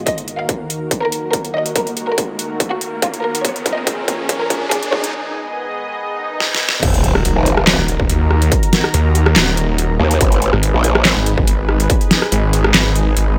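A snarling, detuned sawtooth bass and a growling, formant-filtered wobble bass dominate this heavy, aggressive dubstep excerpt in Eb minor. The wobble bass arrives with the drop at 6.8 seconds and the saw bass joins at 7.2 seconds, both sitting up front alongside a distorted electronic kick. Before that, the opening build-up pairs an intimate chamber violin section, bowed sul tasto with light vibrato and tape echo, with a lush, warbling vintage pad that pumps against the sidechain and carries the chords from Ebm through Bbm7 to Abm. A dubstep drum kit with a deep snare, metallic hats, handclaps, rim clicks and crash cymbal runs throughout in a swung half-time feel at 142 BPM, overdriven and re-recorded in a small room, with drum fills, a filter sweep, a riser and a swell driving toward the drop. An electronic impact lands as the basses enter, and the violins fall away after 5.1 seconds, leaving the pad, drums and bass weight to carry the section back to Ebm and on to Abm. 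Light reverb and a high-pass filter frame a dense, punchy mix.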